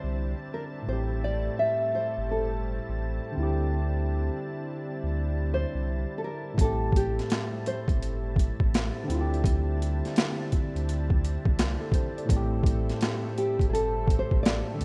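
A fingerpicked, full-bodied nylon-string guitar carries the melody from the start over a worn, slightly out-of-tune, barky electric piano and a lush, detuned, chorused pad, each softened by a low-pass filter, with a round sine sub bass underneath as the harmony sways between D9sus4 and Am7; at 6.6 seconds a gritty, pitched-down, swung boom bap kit with a thumpy kick and high-tuned snare arrives up front, while the guitar drops out at 9.1 seconds and returns at 13.4, giving this reflective, nostalgic lo-fi hip hop excerpt a light reverb and a rough home-demo feel.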